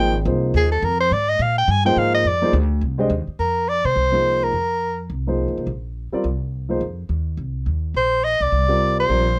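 Hypnotic and spiritual, this modal jazz excerpt swings over chords that move from Fm11 to F7sus4 at 3.4 seconds. The soprano saxophone carries the melody up front with a warm subtone, light vibrato and scooped notes, falling silent at 5.0 seconds and returning at 8.0 seconds. The dark, mellow grand piano and a woody, growly pizzicato upright bass accompany it, all set in a light reverb.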